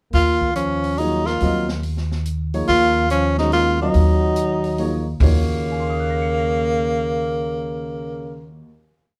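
Modal jazz in Eb dorian, this short, complete piece moves at 142 BPM in a swung 3/4 and rests on a single Ebm9 chord, creating a hypnotic, spiritual mood. Up front, a clear tenor saxophone carries the melody in motif-based song phrases with vibrato and a soft attack, set in plate reverb. Beneath it, a breathy trombone sits distant and roomy, whispering a harmony line mostly in sixths. The upright bass plays woody pizzicato on steel strings in a two-feel, while sticks keep time on the hi-hat of a small-room acoustic kit with a medium-tuned snare and boomy kick until the drums stop at 5.3 seconds, as the group settles onto the final chord. A dark, mellow grand piano enters in the background at 1.0 seconds with syncopated comping in quartal voicings and rings on to 9.2 seconds, all within a warm production and moderate studio reverb.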